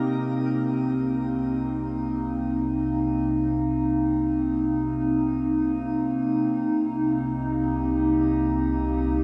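Ambient and free-floating, this spacious, melancholic fragment of a longer piece centres on an up-front, warbling tape-like pad of detuned square and triangle tones holding sustained chords from the start, its nostalgic lo-fi colour thickened by chorus and shimmer reverb, while a deep, round analog bass of sine and triangle tones with a filter sweep fades in beneath from 0.1 seconds, the whole mix set in a huge, wet reverberant space with a dark, muted top end.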